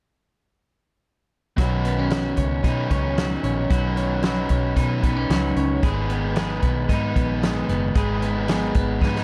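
This is a nostalgic, breezy slice of jangly indie pop in B major, cut from a longer piece and moving at a straight 113 BPM in 4/4. At 1.6 seconds the full band arrives together: a vintage drum kit with a fat snare, punchy kick and hi-hat, plus a round, foam-muted fingered bass that sits dark and amped down low. Over them, a crunchy overdriven guitar is picked up front in the accompaniment, while a bright, twangy twelve-string electric plays clean arpeggios bathed in lush chorus. The harmony moves from Badd9 to G#m at 5.8 seconds, and a drum fill at 9.0 seconds closes the passage. The whole takes place in a small room with light reverb, captured on dry, gritty hardware that suits its vintage character.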